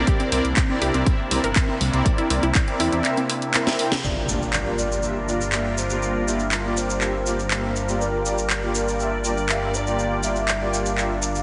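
A straight 4/4 progressive house groove, cut from a longer piece and emotional and bittersweet in mood, is driven by a punchy, tape-warm electronic kick that drops out at 2.7 seconds and a house drum kit of handclaps, hi-hat and a cracking snare, both up front and sounding re-recorded in a small room. Sidechain pumping runs through a bright, evolving filtered supersaw swell holding chords, smooth supersaw stabs treated with phaser and delay, a deep, rumbling, detuned saw bass, and a lush unison pluck arpeggio with delay that stops at 3.4 seconds. After a drum fill and a band accent, the section shifts at 4.0 seconds with a background electronic impact, a grainy vintage tube shaker, and a round, full octave-layered synth lead, dark and set back in the mix, carrying chorus, phaser and dub echo, all sitting in a lush digital hall beneath a heavily compressed, radio-like sheen.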